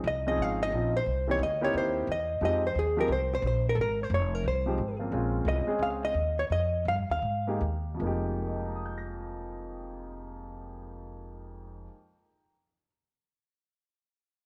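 A dark, clean hollow-body jazz guitar carries the melody up front, its picked, compressed tone touched with slapback echo, from the start until about 7.6 seconds. This cool, swinging small-group jazz piece in F minor moves at 150-178 BPM in 4/4 with a swing feel, and it is cut from a longer performance. A concert grand piano with deep bass and long sustain provides accompaniment throughout, while a woody, pizzicato upright bass with steel strings anchors the low end until about 11.9 seconds. The harmony moves from Dbmaj7 through C7#9 to Fm7, then Bbm7 and Fm9 as the tempo slows between 5.1 and 8.0 seconds, settling on Fm11 in the closing section. A moderate echo chamber reverb and small room ambience give the group a close, intimate sound.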